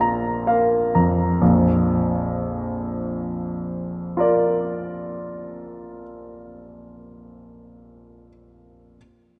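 A clear grand piano opens on a Bb5 chord, slowing down over the first 1.4 seconds before moving to a Bb chord as a new passage begins. This romantic character piece for solo piano, in Bb major, unfolds in a rubato 6/8 at about 41-46 BPM in dotted quarters. Its hopeful, warm mood is carried by a present, up-front instrument spanning Bb1 to Bb5, set in a wet concert hall reverb with a 2.4-second decay and a dark production, and it plays until 9.0 seconds in this fragment cut from a longer work.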